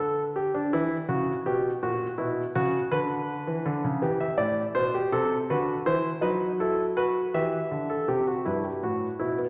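Classical in a baroque style, this short passage is a three-part fugue for solo grand piano, lifted from a longer piece and lasting 9.5 seconds. The mood is serious and driving, set in 6/8 with a straight feel and tuned slightly below modern pitch, at A4 = 436 Hz. The piano is warm and placed up front, its notes carrying a short sustain and ranging from G2 up to E5. A wet concert hall reverb wraps the instrument, lending a lingering halo to its attacks. After an unharmonized opening, the harmony moves through Em, F#7/A#, Bm/D, Am/C and B7/F# before settling back on Em at 7.3 seconds. A brief new phrase begins at 8.5 seconds on Em/G, where the recording is cut off.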